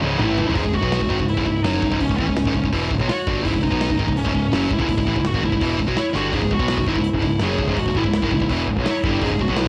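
A straight 4/4 at 166 BPM opens this epic, heavy metal excerpt in C# minor, with a drum fill from the small-room acoustic kit (medium-tuned snare, tight kick, cassette-tape colour) alongside a bright, up-front high-gain rhythm guitar riff, a dark high-gain lead guitar melody entering at 0.2 seconds, a growling overdriven bass in the background, a very quiet tight distorted guitar returning at 6.3 seconds after another fill, and studio reverb over a home-recorded cassette sound.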